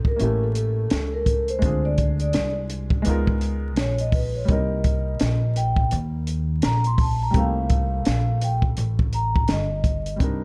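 A swung sixteenth-note groove in four, played on a compact cocktail drum kit, sets a cool, smoky jazz-hop mood, with the punchy kick, high-tuned snare and hi-hat sitting up front with a rolled-off top and small-room feel. Beneath it, the upright bass is plucked pizzicato on steel strings, its woody, dark low notes placed close and prominent. A warm grand piano supplies intimate accompaniment in its middle register, its short sustain and audible action noise lending a vintage character. Over this, a vibraphone played with soft mallets and the motor off takes a ringing, mellow solo from the start until 10.2 seconds. The harmony moves through A7b9, Dm7b5 and Db13 before settling on Cm7 at 4.5 seconds. Dry and dark, with a layer of vinyl crackle, this short passage is cut from a longer piece.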